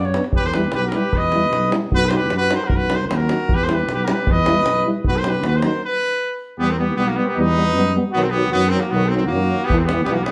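Recorded live by the band in one large studio with moderate reverb, this fiery, bittersweet Balkan brass band piece in E Hungarian minor drives at 154 BPM in 2/4, with a bright, roomy trumpet up front on the melody, a distant, softly attacked flugelhorn with light vibrato on the second line, two background euphoniums (one warm with a smooth top, one mellow) playing accompaniment, a dark, close-miked tuba on bass, and a deep, compressed, saturated davul that drops out at 5.7 seconds as the band hits a brief stop, returning at 9.7 seconds.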